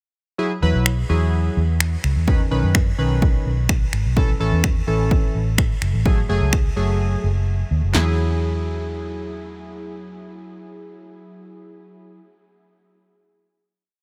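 A euphoric, summery dance-pop piece in E major at 127 BPM in a straight 4/4, tuned slightly flat to A4 = 437 Hz. It opens at 0.4 s with analog keys playing syncopated chords in drop-2 voicings, blending detuned square and sawtooth tones with a touch of ring modulation, a filter sweep, chorus and sidechain pumping for a bright, fast-attack sound. A dark, foam-muted fingered electric bass follows with a round, amped off-beat line that also pumps with the sidechain. A punchy, tape-warm analog drum machine drives a four-on-the-floor beat with kick, snare, handclaps and finger snaps. The harmony moves through Eadd9, Badd9, A and F#madd9. After a brief silence from 7.0 s, the piece settles on a final Eadd9 chord at 7.9 s, and the whole mix stays dry, with bass and drums up front.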